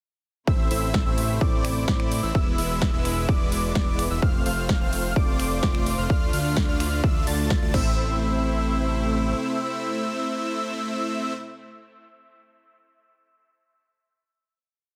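Set in a light reverb, this short, emotional and anthemic festival progressive house piece opens straight into a drop, where huge, detuned supersaw chords pump in a dotted rhythm under dub echo and a moving notch, doubled an octave higher by a nasal, vibrato-laden unison lead with analog chorus and its own echo. A fat sawtooth bass with a filter sweep follows the chord rhythm and also pumps, while a punchy, overdriven four-on-the-floor kick and a crisp big-room kit of snare backbeat, open hats, finger snaps, ride and crash drive hard until the drums stop at 7.8 seconds. In the background a reedy, gut-string chamber section holds pumping sustained chords and rings on with the supersaws and lead through the final hit from 8.0 seconds, after the bass drops out at 9.3 seconds.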